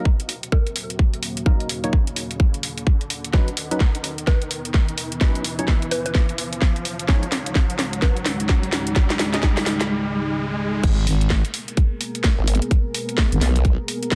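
Bouncy and gritty, this swung bass house cut builds over a deep, moody analog pad, hollow organ-like stabs under a filter sweep, a woody mallet-like pluck, a riser and a tight kick with a garage kit's cracking snare, crash and hats, then after a brief break it drops at 10.8 s into a growling FM bass, joined at 12.4 s by a saturated formant-sweep wobble bass, both pumping up front.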